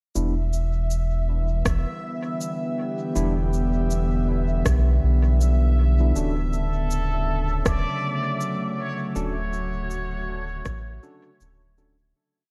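Deep and meditative, this short ambient dub piece moves at 80 BPM in 4/4 with a swung sixteenth feel, set in E dorian and shifting from Em7 to Dmaj7 at 6.2 seconds. A round, soft sub bass sits up front with a dub-style line, while an airy, breathy pad with chorus holds slowly shifting chords and a bubbling, resonant filter texture sustains a single bright high note with chorus and its own reverb. Sparse chord stabs from an overdriven, barky tine electric piano played through a combo amp echo in dub fashion, one shape moved in parallel, alongside an electronic shaker and rim click with echo of their own. A soft, slow electronic kick with overdrive enters at 1.7 seconds in the background, its deep thud carrying the sound of a large room. At 6.5 seconds a plunger-muted trumpet takes a forceful, jazz-style solo of call phrases with wah-wah and light vibrato, distant and roomy yet up front, roughened by vintage 12-bit sampler grit and dub echo, as the whole groove fades out from 8.2 seconds under light reverb.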